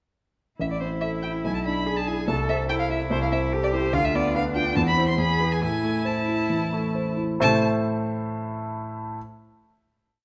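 Stormy and urgent, this short, quick classical-period piano trio piece in A minor at 132-146 BPM sets a rich, vibrato-laden violin melody up front over a focused cello counter-melody with sustained chords and a warm concert grand piano's deep-bass broken chords, whose long sustain carries alone past the strings into a final chord from 7.4 seconds in a moderate recital hall.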